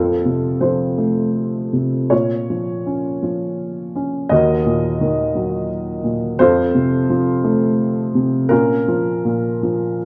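A 3/4 pulse at 84 BPM bends freely in rubato, its beats uneven, as a lone upright piano plays this reflective, wistful classical fragment in B-flat harmonic minor, lifted from a longer piece. The piano sits up front with a dark, mellow, woody tone, ranging from Eb2 to Eb5 over harmonies that move from F through Bbm and Ebm, back to F and settling on Bbm at 8.5 seconds. A moderate recital-hall reverb and a warm production wrap the playing in a gentle, intimate glow.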